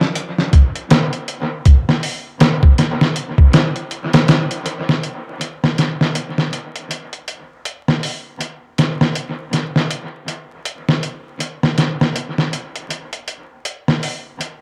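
Trip hop with a smoky, dark mood, this short cut from a longer piece moves at 80 BPM in 4/4 with a 60% swing on the sixteenths. A compressed, pitched-down, sampler-style drum kit sits up front and plays throughout, pairing a thumpy kick and medium-tuned snare with hi-hat, its gritty, tape-warm tone trailed by dub echo. The echo-heavy mix carries light reverb and vinyl crackle, and the music moves into a new section at 4.7 seconds.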